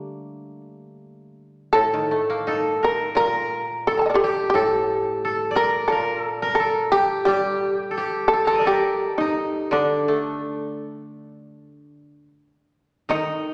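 Rubato and unhurried at roughly 71-89 BPM in 4/4, this austere, calm fragment of Japanese chamber music in D miyako bushi sets a powerful, buzzing, plectrum-plucked shamisen melody up front over two bright, woody kotos played with fingerpicks, one tracing a second line and the other a low accompaniment, all three playing throughout the 13.5 seconds in a wet concert hall reverb.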